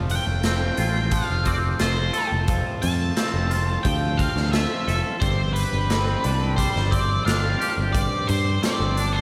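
A raw garage drum kit sits up front in this short cut from a longer psychedelic rock piece, its punchy kick, medium-tuned snare and hi-hat sounding gritty and saturated with a rolled-off top and a pumping, bright stone-room character. The tempo is 88 BPM in a straight 4/4, and the mood is hypnotic and kaleidoscopic as the harmony moves from F to Gsus4 at 5.2 seconds. A round, dark picked electric bass holds the low end up front, while a bright, clean, twangy electric guitar plays a compressed riff, double-tracked and colored by phaser. Entering at 0.1 seconds, an octave-fuzz lead guitar carries the melody in a dark, distorted tone with delay trailing behind it. A buzzy, overdriven vintage combo organ sustains chords in the background, and the whole mix is dreamy and soaked in lush hall reverb over a small room ambience.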